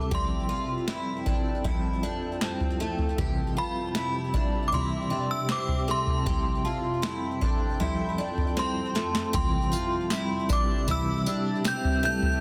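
A dense, heavily limited modern master with light reverb and a digital ambience frames this dreamy, floating dream pop excerpt, which moves at 78 BPM in a straight 4/4 in C major, tuned to A4 = 438 Hz, with the harmony alternating between Fmaj9 and Cmaj7. A chiming, inharmonic FM synth chime carries the melody high above, its ringing tone treated with ensemble chorus, tremolo and digital delay. Beneath it, a mellow, clean, fingered electric guitar adds dark accompaniment through tremolo and lush chorus, while a picked twelve-string acoustic guitar with old strings plays woody, boxy, octave-doubled arpeggios, also bathed in lush chorus and digital delay. A detuned, granular ambient pad with a slow attack and long release holds ethereal sustained chords under chorus and built-in reverb, and a very quiet large celesta with medium felt hammers adds a sweet, bell-like texture from 0.1 s. Also from 0.1 s, an up-front, overdriven analog drum machine drives the track with a deep kick, crisp snare, tambourine and toms, and its fill at 8.6 s leads into a new section at 9.3 s.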